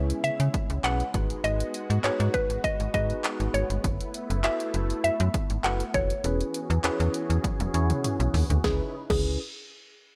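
Set in a digital ambience, with a filter sweep running through its first 8.6 seconds, this energetic, confident dance-pop excerpt features a woody, round mallet-like synth pluck carrying the melody with a chorus sheen. Beneath it sit a clean tine electric piano heard through built-in speakers, a detuned, evolving supersaw swell holding sustained chords, and a snappy, metallic slap-like FM bass up front, with the keys, pad and bass all pumping with the sidechain. A punchy, tape-warm analog drum machine keeps a straight feel and plays a fill from 7.4 seconds, while the chords move from C#m7 through G#m7, B7sus4/F# and E6 back to C#m7.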